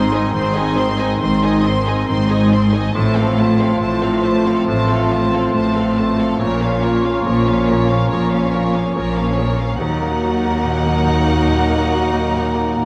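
Cinematic orchestral music in Eb dorian, unfolding at a rubato 70 BPM in 4/4 with a longing, sorrowful mood across this 12.8-second passage cut from a longer piece. A symphonic violin section carries the melody between Db5 and C6 with expressive vibrato and a lush, smooth top, while a second violin line, an airy, hollow small flute group and a dark solo clarinet weave supporting lines in the background. A bright grand piano with long sustain provides open-sounding accompaniment alongside a soft-attacked viola section, and a very quiet French horn section with a vintage character holds sustained chords. Underneath, a cello section with expressive vibrato and a distant, rich double bass section with smooth, even bowing anchor the bass. The harmony moves from Ab through F/A and Bbm before settling on Ebm at 9.8 seconds, and the whole ensemble sits in a wet scoring-stage reverb of 1.6 seconds.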